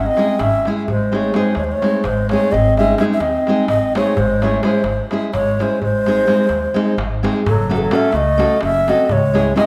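A moderate stage reverb gives this restless, virtuosic Balkan wedding-band piece in 7/8, cut from a longer performance, an open sense of space, with a breathy, reedy low ney carrying the melody up front, its tongued notes shaded with vibrato. A smooth-topped clarinet plays a second line beneath it, while a full-bodied, fingerpicked nylon-string guitar, also up front, joins at 0.2 s, over woody pizzicato upright bass and a crisp, deep metal-shell darbuka. Set in G# phrygian dominant at 256 BPM in eighths, the harmony moves between C#m/G# and G# before shifting to F#m at 7.5 s for a brief new section.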